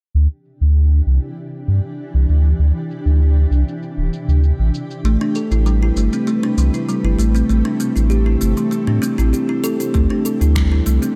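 A woody, ringing kalimba enters at 5.1 seconds with bright, up-front arpeggios through tape echo and shimmer reverb, lighting up this mystical, earthy slice of organic downtempo at 98 BPM in a straight 4/4. Beneath it, a round sine sub bass and a cloudy, evolving granular pad both pump to the sidechain, the pad's blurred, sustained chords moving from D9sus4 to Am9 and back, while low-passed electronic cabasa and finger snaps sit low in the mix throughout. A deep electronic kick, re-recorded in a large room, arrives at 9.9 seconds as the music moves into a new section, all set in a light digital ambience.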